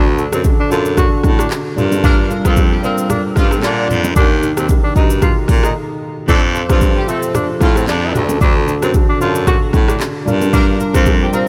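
Up-front electronic afro-pop drums with a deep kick, metallic hats, handclaps, rim click and shaker drive this mellow, smooth afrobeats excerpt at 113 BPM in G minor, where an intimate, whispered baritone saxophone carries the bass, a breathy, subtoned tenor saxophone with scooped notes and diffuse ambient delay sings the melody over a worn, slightly out-of-tune tine electric piano with subtle chorus, a clear, distant horn section in octave doubling enters at 2.0 s, very quiet ringing bongos and congas add texture, a barely audible downlifter sits in the opening two seconds, and a short break arrives at 5.8 s, all within a dreamy mix soaked in lush hall reverb.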